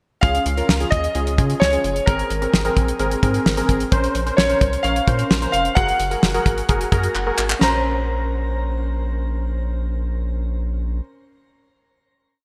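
Synth-pop in Bb minor at 130 BPM, this short, cool and driving piece sets a clear, smooth concert grand piano motif, washed in chorus, shimmer reverb and delay, over mellow detuned analog keys playing syncopated close-voiced chords, a rubbery, nasal square bass pulsing in eighth notes, and a damped 70s kit with a fat snare and dark cymbals that plays a straight drum-machine beat until a fill at 7.2 seconds, leaving the others to ring out on a final Bbmadd9 chord from 7.6 seconds amid bright 1980s-style digital sheen.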